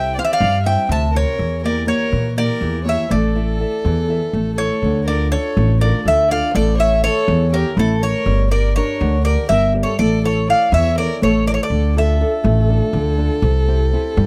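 From the first moment, a Greek folk band plays together in D harmonic minor, at 244 BPM counted in eighths in a straight 7/8, with an intense, dramatic mood. The bouzouki carries the melody up front, its picked double strings bright and metallic, with some strings doubled at the octave. Beneath it, a single violin plays a second line with light vibrato, a soft attack and an airy bow over the fingerboard, sounding rich, intimate and close. A small-sounding nylon-string guitar is fingerpicked as accompaniment. The upright bass, plucked on steel strings, is woody and growly and also sits up front. The harmony moves through C, Edim and A5, then runs from Dm through A, Gm and A back to Dm and C starting at 4.8 seconds, all in a dry, close 1970s-style studio sound with light reverb, cut from a longer piece.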